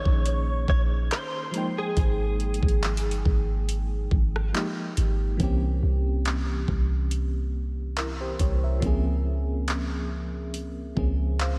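A clean, direct-recorded electric guitar opens this sensual, longing contemporary R&B excerpt with a short picked, compressed melody bathed in ensemble chorus and diffuse ambient delay, ending at 4.5 seconds, while an FM electric piano with tremolo lays down decaying chords beside it. From 0.1 seconds a deep, boomy 808-style bass with a sine tone and fast attack sits up front with a produced electronic drum kit whose knocking kick, metallic hi-hat, handclaps and rim clicks carry a tape-warm, lightly swung feel. Light reverb softens the mix as the harmony moves from Bbm7 and Fm11 into C7b9 at 5.4 seconds before settling on Bbm9/Db.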